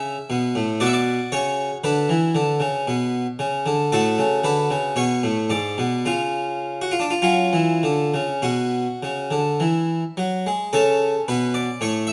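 A solo harpsichord opens this brief, baroque-style suite movement in triple metre, its plucked, brilliant tone set up front with the ring of doubled octave strings. The mood is flowing and dance-like, though the pulse bends freely with rubato. The French-style instrument ranges from G#2 up to E5, moving through minor harmonies, including a diminished chord near 5.0 seconds and a stretch of bare fifths from 7.2 seconds. A moderate stone-room reverb lends the sound a resonant, chamber-like bloom. At 10.7 seconds the opening section begins again before this short cut from a longer piece ends at 12.1 seconds.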